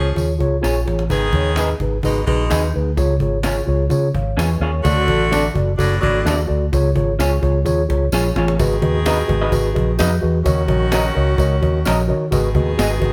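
A straight 4/4 groove drives this joyful, uplifting excerpt of uptempo 1960s-style soul, which opens on a band accent with a drum fill at 0.6 seconds; a dark, round, foam-muted fingered electric bass sits up front beneath a mellow, clean tine electric piano, a clear, soft-attack saxophone section carries a jazz-style second line, and a slightly broken-up, lo-fi electric guitar through a small old amp adds picked stabs bathed in spring reverb, while a woody cajon with faint snares keeps time in the background and a jingly, bright tambourine rings out, all captured as a band playing live in one room with light reverb.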